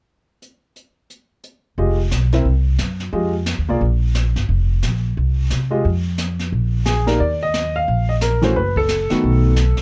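A brushed drum kit opens this swinging jazz piano trio fragment alone, its high-tuned snare and boomy kick sounding distant and roomy, as if played in a small room. At 1.8 seconds the concert grand piano and upright bass enter together, both placed up front and louder than the drums. The piano carries the melody with an intimate, natural tone, deep bass and audible action noise. The pizzicato bass, woody and growly on steel strings, anchors the harmony as it moves from Fm9 through Gm and Fsus4. A closing passage from 7.2 seconds shifts to Eb5, Gbm and B7, giving this sophisticated, warm performance a dry sound with little reverb.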